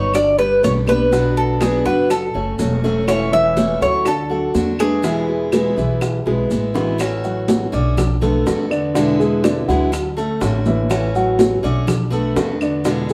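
Up front, a metallic, double-strung Cuban tres carries the melody in this sunny excerpt of Cuban son and guajira, playing only until 6.5 seconds, just before a drum fill leads into a second section of richer chords. Beneath it, a bright picked steel-string guitar with audible finger squeak, a dark, long-sustaining baby grand playing arpeggios, and a thumpy gut-string upright bass hold steady throughout. Ringing congas, tight bongos and woody claves sit in the background, grainy maracas add their texture, and the whole band sounds like it is playing live together in a large studio room.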